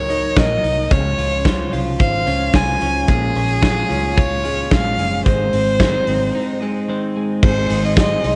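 An up-front, expressive bowed violin carries the melody with vibrato, portamento and a soft attack, its tone softened by cassette tape and plate reverb, in this nostalgic, youthful slice of jangly indie pop at 110 BPM. Beneath it, a compressed twelve-string electric guitar picks arpeggios with a vibrato effect, and a direct-recorded clean guitar sits in the background with subtle chorus, both moving through Gb6, Dbmaj7, Bbm7 and Ab over a round, foam-muted bass and a punchy, big-room rock kit with bright cymbals. After a break at 6.3 seconds, a very quiet reedy electric piano with fast tremolo and a detuned sawtooth pad with a slow attack enter at 7.4 seconds, all within the hazy, lo-fi glow of a home cassette recording.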